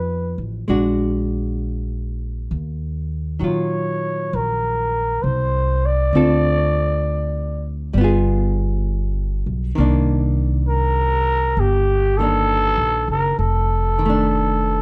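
A dark, dry recording of a late-night, tender jazz ballad fragment in a lilting swing, where a raspy, growling trumpet carries the melody over a clean, hollow-body archtop guitar comping through moody extended chords and a woody pizzicato upright bass, all three playing throughout its 14.8 seconds.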